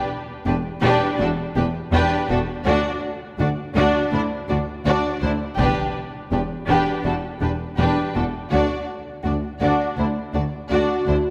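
Bathed in a wet concert-hall reverb, this dark, relentless build-up from an epic orchestral film score sets a smooth, lush violin melody over a shadowy second violin line and an up-front, focused viola part, with distant double basses and background cellos joining at 0.5 seconds, a band-limited, vintage-sounding taiko ensemble struck with hard sticks breaking in at 5.6 seconds, and a mellow French horn section arriving with a sustained chord at 10.7 seconds as the excerpt cuts off.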